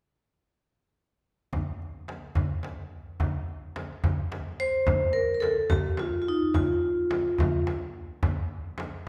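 Passionate and festive, this short excerpt of a Persian modal ensemble piece in F dastgah homayun moves at 72 BPM in a straight 6/8, with a deep, large frame drum up front and a close, dry tombak played with hard hands in the background running from 1.5 s to 8.9 s, while a dark, ringing vibraphone with medium hard mallets and the motor off carries a smooth melody between Eb4 and C5 from 4.6 s to 7.6 s, all heard from further back in a recital hall with a 1.6-second reverb.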